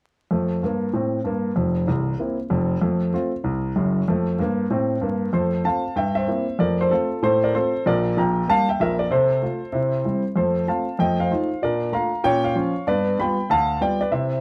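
A clear, intimate grand piano plays alone from 0.3 seconds, swinging through a playful stride jazz passage in F major at 191 BPM, its long sustain and audible action noise sitting up front in the mix. The harmony moves from F and C7 through Gm/Bb and F7 to Bbmaj7, Bbm and a closing G7, a short fragment cut from a longer piece. A dark, warm production with moderate studio reverb and a layer of vinyl crackle surrounds the recording.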